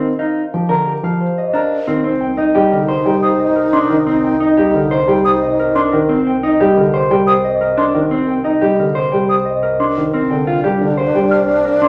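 This meditative, hypnotic passage of minimalist classical pattern music opens with a concert harp, a dark baby grand piano and a mellow electric guitar sounding together, moving briskly at 178 BPM in 6/4 in C minor, tuned slightly low at A4 = 439 Hz. The thumb-plucked harp carries a ringing melody, while the worn, vintage-toned piano sits up front with a low accompaniment and the clean, fingered guitar, also up front, spins arpeggios. A hollow silver concert flute joins at 1.5 seconds with high, pure, tongued arpeggios touched by vibrato. At 2.0 seconds an airy wooden-headed alto flute adds a soft-attacked second line, and a bowed double bass section settles underneath on a single smooth, even note. The harmony drifts from Cm9 to Cm7 and later to Bbadd9/C, with the alto flute returning for that final chord, all bathed in a generous studio reverb in this cut from a longer piece.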